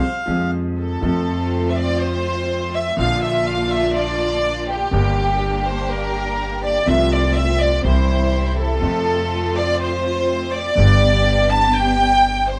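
Tango in F major at 123 BPM with a rubato feel and a tense, passionate mood, cut from a longer piece, where a reedy bandoneon states the melody up front for just the first 0.5 seconds while a gut-toned violin section with light vibrato, playing from the start, takes a smooth solo from 1.0 seconds, over a clear vintage concert grand piano with deep bass, a woody, thumpy pizzicato upright bass, and lush, soft-attack stabs from a symphonic string section, all in a light-reverb room where the band plays live together.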